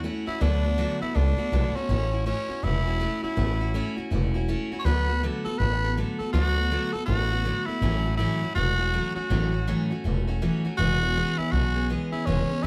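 A bright picked steel-string acoustic guitar and a woody pizzicato upright bass open this upbeat, retro rock excerpt with swung eighths, joined at 0.3 seconds by a raspy, gritty tenor saxophone that carries the solo melody with vibrato and a punchy edge over D6, A6 and E6 chords, all heard as a band playing live in one room with light reverb.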